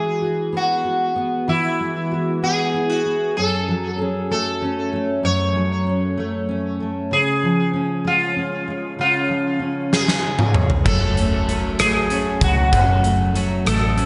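Romantic and tender, this six-eight pop ballad moves at a slow 64 BPM with a straight feel in a passage cut from a longer piece. A buzzing, shimmering sitar carries the melody up front, its plucked notes and sympathetic strings colored by slapback and tape echo. Beneath it, a full-bodied, double-tracked fingerpicked steel-string acoustic guitar supports the harmony through Eadd9, F#m and C#. A huge arena drum kit with a fat snare and punchy kick arrives with a fill at 9.9 seconds. A bright, twangy twelve-string electric guitar then adds background arpeggios with its own slapback echo, and a dark, foam-muted vintage electric bass enters at 10.9 seconds as the harmony returns to F#m. Everything sits in a lush hall reverb that gives the recording a big arena sound with a soft top end.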